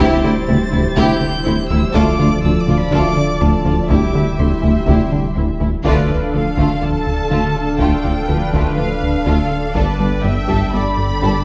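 A steady, straight 4/4 pulse at 123 BPM drives this vast, futuristic stretch of hybrid orchestral and electronic film score in D dorian, cut from a longer piece. A very quiet, close and dry taiko ensemble struck with heavy sticks, a punchy sub bass with a pitch-drop attack, and a funky, evolving plucky analog bass riff in the background anchor the low end, joined by a very quiet dark tuba and hushed, bowed cello and double bass sections. Above them, a tight, driving sequenced synth runs detuned sawtooth arpeggios while a bold, brassy analog pad with chorus and a moving notch holds sustained chords, and a mellow, vintage French horn section adds background chords until 5.0 seconds. The melody opens with a rich solo violin, expressive with vibrato and portamento, which stops at 5.4 seconds, while a focused, lush violin section carries the tune throughout, backed by a soft-attack second violin line and an even, smooth viola section. 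The harmony moves between C over D and D minor before settling on Gadd9, with a full-band accent at 5.9 seconds marking the turn into the second section. A wet recital hall reverb gives the whole blend a spacious, cinematic sheen.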